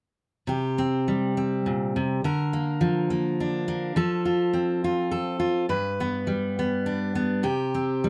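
Melancholic and wistful, this short folk passage, cut from a longer piece, features a single fingerpicked steel-string acoustic guitar. It moves in 3/4 at around 103 BPM with a loose, rubato feel, tuned slightly sharp to A4 = 443 Hz. The jumbo-bodied guitar sounds full-bodied and up front, spanning G2 to B4 and playing from 0.5 to 8.1 seconds, with audible finger squeak adding an intimate, human touch. The harmony passes from C5 through Bb/D, F and G before returning to C5 at 7.4 seconds. A light reverb gives the solo instrument a gentle sense of space.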